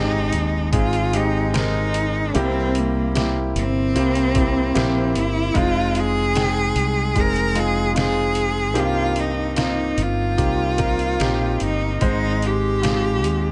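A hopeful, heartfelt pop ballad fragment where a close, bowed solo cello sings the melody with vibrato, portamento and a soft attack over an intimate grand piano whose action noise is audible, a round, dark fretless electric bass bathed in lush chorus, and a gritty, pitched-down sampler-style trip hop kit with a thumpy kick from 0.3 s, all in light digital ambience, as a barely audible electronic impact sounds near the start and the chords move from Ab through C7, Fm7 and Cm7 back to Ab.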